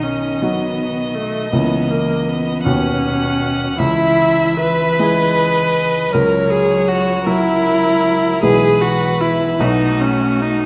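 A piano quartet opens together in this serene, slow romantic movement in 6/8, flowing at 53 beats per minute in dotted quarters with a free, rubato feel. A clear, close violin sings the melody with smooth, even vibrato, while a rich viola sits up front in the accompaniment, and the cello carries an expressive second line with vibrato and portamento. A present grand piano spans from deep bass to the middle register beneath them, and the whole ensemble sits in the moderate reverb of a scoring stage across this 10.7-second excerpt, whose harmony moves from B through C#m and F#7/C# before settling on B5.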